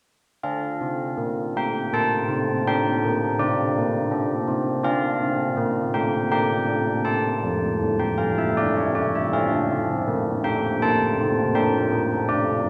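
A classical tune for church bells in D minor, this short cut from a longer piece moves at 81 BPM in a straight 3/4 with a wintry, solemn mood. Old church bells play alone from 0.4 to 12.7 seconds, spanning E3 to A5 with a bronze, clangorous ring, a padded-clapper mellowness and a beating minor-third overtone, sitting up front in the mix. The harmony moves from D minor through G minor, a suspended A and A major back to D minor before settling on G minor, all bathed in a wet scoring-stage reverb of about 1.7 seconds in a recording made in a church or concert hall.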